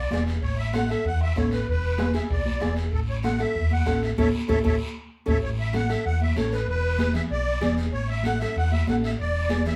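Danceable and joyful, this cumbia clip features a reedy, shimmering musette accordion carrying the melody over a round, dark electric bass that sits up front and a fingerpicked nylon-string guitar filling in the chords between A and E7. Bright, high-tuned congas and a raspy, distant guiro keep the groove going throughout, while a soft-beater bombo sits in the background until about 5.3 seconds, near the end of a band accent from 4.2 to 5.4 seconds. The band plays live in one room, with a wet studio reverb on the mix and the accordion close-miked and dry.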